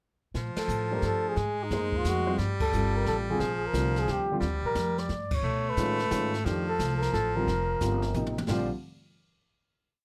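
Upright bass walking in woody pizzicato and a brushed kit with snare sweeps, dark cymbals and a boomy kick open this playful, warm small-group swing and bop piece in 3/4 at 177 BPM in Bb major, joined moments later by a punchy, edgy baritone saxophone on a long guide-tone line, a veiled trumpet in a bucket mute singing motif-based phrases with vibrato and scooped notes, and a grand piano comping in syncopated quartal voicings, all heard in a close, dry recording with band accents at 0.5, 2.5 and 5.3 seconds and a drum fill leading into a final chord at 8.5 seconds.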